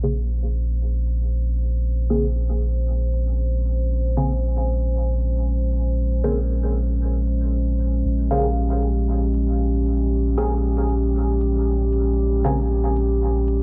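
Dub techno with a cavernous, deep mood, this short passage cut from a longer piece holds on a single Bbm9 chord with a slight swing on the sixteenths. A dark analog pad sustains slow-attack chords throughout, its detuned, wave-folded tone thickened by chorus and a long release. Alongside it, a filtered chord stab plucks muted, decaying hits through a phaser and dub echo, stopping at 12.6 s. The soft sub bass sits up front with a round, fast-attack tone that carries the low end. A tape-warm electronic hi-hat ticks very quietly far in the background, while light reverb, digital ambience and a filter sweep spanning the whole passage give the mix its shadowy, enclosed sound.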